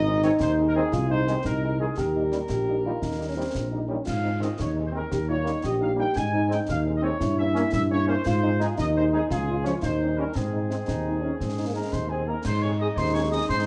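A dark, up-front tuba anchors this rousing, festive military-style wind band march in 6/8 at 115 BPM in Ab major, where a mellow, distant trumpet section carries the melody over a warm euphonium second line, a very quiet French horn accompaniment, bright sustained trombone chords and close, dry concert snare, bass drum and dark clash cymbals, with a pure, vibrato-tinged piccolo joining at 11.8 s, all heard through a moderate studio reverb and the dull, warbling pitch drift of worn cassette tape in this excerpt from a longer piece.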